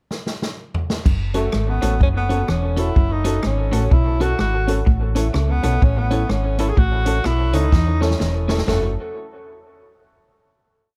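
The rhythm starts the piece: a swinging big-band drum kit plays a fill alone through a pickup bar, then settles into a ska beat at 126 BPM in 4/4, with a side-stick backbeat, punchy kick and medium-tuned snare up front in a natural studio room, plus another fill near 7.7 seconds. At 1.1 seconds a fingered electric bass enters with a dark, round, amped walking line with slides, doubled in the background by a semi-hollow electric guitar picking muted notes through dub echo. A clean, compressed electric guitar adds off-beat chops, and a woody, slightly detuned upright piano with audible action noise plays off-beat stabs, both carrying dub echo. Over this a breathy tenor saxophone takes the solo melody in hook phrases, with scooped notes, vibrato and subtone, set in dub echo and plate reverb. This short, energetic and driving piece in F# dorian moves between F# minor and A before closing on an F# minor chord from 8.7 seconds.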